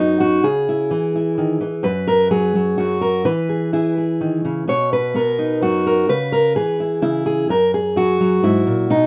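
Gentle and peaceful, this short folk excerpt, cut from a longer piece, features a lone fingerpicked steel-string acoustic guitar in 3/4 with a straight feel. The guitar sits up front with an auditorium-sized body and a warm tone, ranging from F#2 to C#5 across its 9.1 seconds. The harmony opens on C#m, passes through a chordless moment at 1.8 seconds, then moves through E and Bmaj7 before returning to C#m and settling on F#sus2. A light reverb gives the instrument a touch of space, while the rough home demo mix keeps the sound intimate and unpolished.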